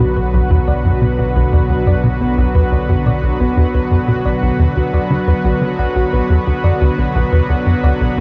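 Ambient, sequencer-driven space music in B minor at 88 BPM, this cosmic, expansive passage is cut from a longer piece and holds on a single B minor chord across its 8.2 seconds. A tight, punchy sequencer bass drives a riff from B1 to D3, its sawtooth, square and sine tones shaped by wave-folding, a filter pluck and a moving notch, with delay trailing behind. Above it, a lush unison pad sits up front with thick, detuned, warbling chords that bloom slowly and linger, bright and vintage under a chorus. Deeper in the background, a thumb-piano-like synth pluck spins round, tine-like arpeggios with FM and a noise layer, softened by chorus and delay. A very quiet analog drone holds B1 underneath, its pulse-width modulation lending an evolving glow, while a huge ambient reverb with a 7.7-second decay gives the dark production its vast, spacious air.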